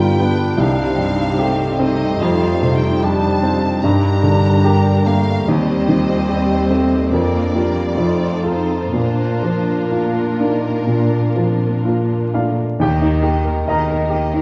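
A dark, softly crackling recording in a moderate recital hall carries this passionate, lyrical romantic movement for piano and orchestra, cut from a longer piece, in a rubato 4/4 at 60-76 BPM in Bb major. A clear, polished baby grand piano leads the melody up front, joined by a lush, expressive violin section, while a distant second violin section and a vintage-toned clarinet trace second lines over a very quiet viola section with portamento, a shadowy bassoon, and a mellow French horn section holding sustained chords. A close, rich cello section anchors the bass; the clarinet and bassoon stop at 12.4 s, the horns at 12.8 s, and a double bass section enters at 12.8 s on the closing Eb chord.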